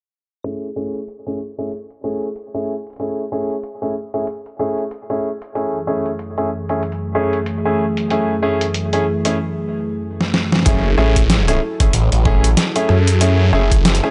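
Glitch hop at 94 BPM in F# minor with a swung, gritty and playful feel, this excerpt opens on bright concert grand piano stabs roughened by 12-bit sampler grit, tape echo and sidechain pumping, riding a filter sweep over a pitched-down, compressed boom bap kit of hi-hat, rim click and snare around an F#m9 chord. A smooth, chorused analog pad enters at 5.5 seconds, and after a drum fill, a swirling, thick detuned saw bass with phaser and tube saturation arrives at 10.7 seconds alongside a knocking electronic kick. The dry, dark-edged sound carries transformer saturation and little reverb.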